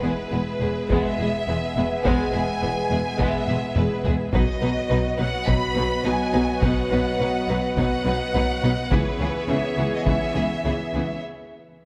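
Bowed strings open at once in this dark, epic orchestral film cue at 105 BPM in 4/4: a lush, focused violin section carries the melody high up while a second violin line, a distant viola section and a clear, intense string section holding sustained chords sit in the background. Beneath them, smooth cello and close double bass sections anchor the bass, and a dark, roomy French horn section adds sustained chords from a distance. Taiko drums struck with hard sticks enter at 0.9 s, sounding close and dry and standing out as the loudest part, with a drum fill from 3.5 to 4.3 s. The harmony moves from E to B and then to C#m7 at 8.9 s, and the drums stop at 10.6 s before a short break at 11.2 s. A moderate scoring-stage reverb gives the orchestra its sense of space in this brief cut from a longer piece.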